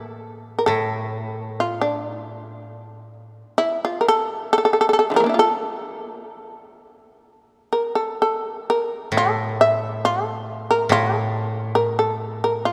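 Japanese traditional music, calm and austere, this excerpt moves in a free, rubato feel over a 2/4 metre. The shamisen carries the melody from start to finish, its plectrum-plucked, fretless tone bright, buzzing and percussive, and it sits powerfully at the front. The koto supports it with fingerpicked accompaniment in a lower register, sounding woody and dry, also placed up close. The koto stops at 3.4 seconds, leaving the shamisen alone, and returns at 9.1 seconds to play through to the end. A long church reverb surrounds the recording with a spacious, resonant hall, lending the sparse lines a solemn air.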